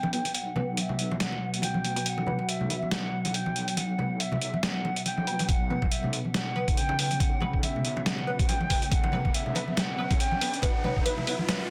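Deep dubstep with a brooding, dark half-time swing, built up over a string-like drone under a filter sweep as an airy, reedy shakuhachi melody drifts through low-pass filtering and dub echo, bright vintage congas play beside gritty, tape-warm sampler-style hi-hat and snare that sit up front, a deep wobbling bass hums in the background, muted nasal chord stabs pulse through phaser and lush chorus, a thumpy kick enters at 5.5 seconds and a riser climbs in from 8.6 seconds, all within a spring-reverb space and a dense, heavily limited master.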